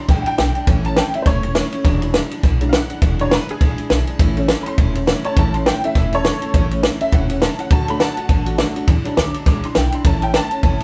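A fast swung 4/4 at 205 BPM drives this rowdy, retro rockabilly excerpt in A major, cut from a longer piece and running about 10.8 seconds. A detuned, jangly honky-tonk upright piano carries a solo throughout, its vintage, present tone ringing over chords that move from E7 to A, then to D and back through E7 to A. A compact cocktail drum kit sits up front with a punchy kick, a high-tuned snare and dark ride cymbal, all dry and natural. A woody pizzicato upright bass with steel strings anchors the low end, while a picked dreadnought acoustic guitar adds a bright, full-bodied accompaniment. The band sounds like it's playing live in one room, with a light reverb around it, and the same section plays twice across the clip.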